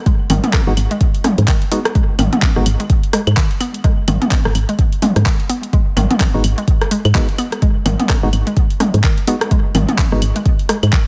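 A woody, round FM bass sits up front in this quirky, clinical slice of minimal techno, its soft, dark notes striking with a fast attack and decaying under sidechain pumping in G# minor. The tempo is 127 BPM in 4/4, with a 59% swing on the sixteenths. A deep electronic kick anchors the pulse, joined by a garage kit of handclaps and bright hats, and by a tape-warm techno kit of claves, rim clicks and toms fed through a digital delay. A hollow, bouncy square-wave pluck, detuned and chorused, carries the riff with its own sidechain pumping and digital delay. A wave-folded organ stab with a full-bodied, percussive tone cuts in at 0.7 seconds, drops out at 2.6 seconds and returns at 6.3 seconds, and the mix sits in a digital ambience.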